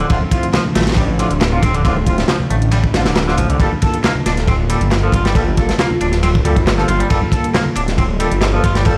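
A punchy, up-front breakbeat kit of kick, ride and snare drives this gritty, raw breakbeat cut, over a thick, swirling phased saw bass, a bright, twangy clean electric guitar riff with 12-bit sampler grit and digital delay, warm brass stabs with light vibrato, a warbling, nostalgic pad with sidechain pumping in the background, layered electronic handclaps and hi-hat, and very quiet congas and bongos, all heard as if played on a big sound system in a bare room with vinyl crackle.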